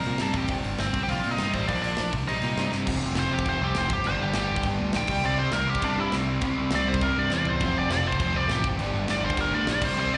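A live-gig sound carries this short cut from a longer punk rock piece, heard through the venue's PA with a small room and recital hall reverb and a top end that stops short of 10.8 kHz. At 203 BPM in a straight 4/4, the mood is aggressive and urgent, with a tight metal drum kit of acoustic, big-room character, medium-tuned snare and tight kick driving crash, hi-hat, toms and fills at 2.7 and 7.3 seconds. Up front, a bright, overdriven picked bass growls low, while a biting lead guitar with overdrive, slapback echo and digital delay carries the melody and takes a solo from 2.9 seconds to the end. Behind them, a cranked stack guitar with a warm overdriven tone and slapback echo and a dark, sludgy distorted guitar both play the riff. A very quiet, double-tracked fuzz guitar thickens that riff at the opening and returns at 7.6 seconds, as the chords open on a G power chord, move through Cm and Bb, then settle into power chords on F, G and C.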